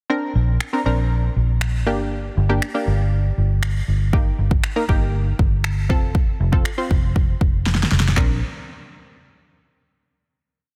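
Dance-pop in Bb major at 119 BPM, a short, carefree and summery piece that opens at 0.1 seconds with bright, punchy sawtooth chord stabs in close voicing, their syncopated plucks shimmering with chorus and pumping against the sidechain as they move from Bbadd9 through Gm, Eb/G and F. A dark, round, foam-muted electric bass sits up front with an off-beat line that also pumps, while a layered deep house kit of deep kick, fat tape-warm snare with soft clipping, snaps, handclaps and toms drives a syncopated pop beat. A drum fill at 7.7 seconds leads into a final Bbadd9 chord at 8.2 seconds, all within light reverb and a dense, heavily limited modern master.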